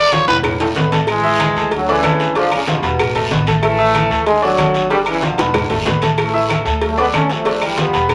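Wet small-room reverb surrounds this joyful, sunny salsa excerpt in A major at 188 BPM, where a bright, slightly detuned upright piano with short sustain and a dark, thumpy pizzicato upright bass on gut strings set the groove; low-tuned, thick-skinned congas with a compressed, saturated tone under soft hands sit beside a raspy guiro, while round cowbell and bongos, ringing metal-shell timbales and agogo bells, and woody claves sit in the background; drum fills arrive at 0.3 and 5.4 seconds, and a clear, tight trombone section with light vibrato carries the up-front melody from 1.1 seconds.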